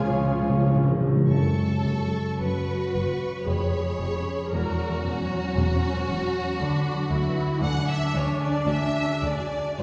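In a rubato 3/4 at roughly 48-59 BPM, this solemn, melancholic classical passage opens with an up-front timpani fill over the first 1.2 seconds and brief touches of a faint clarinet, a distant silver flute, oboe, bassoon and a very quiet, mellow trumpet section, while throughout a lush violin section carries the melody in the background over a second violin line, expressive viola portamento, rich but very quiet cellos, clear double basses and a ringing, thumb-plucked harp, moving from C# through F#m to G#m7b5/D, heard from further back in a wet concert hall.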